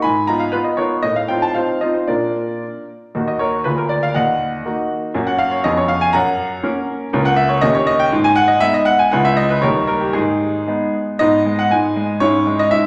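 A clear, up-front concert grand piano with an open sound and deep bass carries this serious, restless classical-period sonatina passage alone, taken from a longer piece at 120 BPM in 2/4 with a rubato feel, starting in E-flat minor and moving to G-sharp minor at 7.1 seconds, all set in the lingering reverb of a recital hall.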